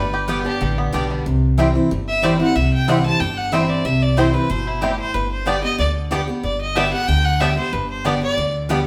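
A clear, up-front fiddle with light vibrato opens this driving, virtuosic bluegrass fragment alongside a twangy, fingerpicked banjo, a full-bodied jumbo acoustic guitar with audible finger squeak, and a woody, thumpy upright bass on gut strings. A round, double-strung mandolin adds bright picked stabs from 0.3 seconds as the band moves from G to C at 1.3 seconds and back to G at 5.1 seconds. The group plays live together in a stone room with a noticeable reverb tail.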